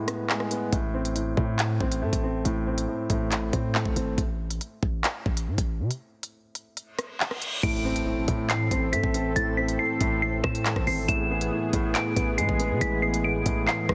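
A knocking, crisp drill kit with crashes, claps and rim clicks drives this dark, menacing half-time hip hop excerpt at 139 BPM in A harmonic minor, with a punchy, heavy 808 bass and a mellow, low-filtered grand piano that drops out at 4.2 seconds, before a very quiet reverse cymbal entering at 7.0 seconds lands on an impact at 7.6 seconds, where a tinkling, warbling vintage FM tine bell with tape echo and a smooth, detuned sawtooth pad join the returning piano, all under a heavily compressed, radio-like sound.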